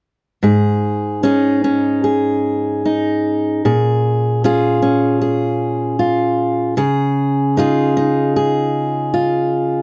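A fingerpicked steel-string acoustic guitar opens at 0.4 seconds, playing alone in a pastoral, nostalgic folk vein at an unhurried 76 BPM in a straight 4/4. Its tone is warm with an auditorium-sized resonance, sitting up front in the mix and spanning Ab2 to Ab4. The harmony moves from Absus4 to Bbm7 and settles on Dbadd9 at 6.8 seconds, giving the brief passage an open, wistful colour. The sound is dry and close, in the manner of a 1970s studio recording, touched by light reverb. This short fragment of a longer piece closes at 9.8 seconds.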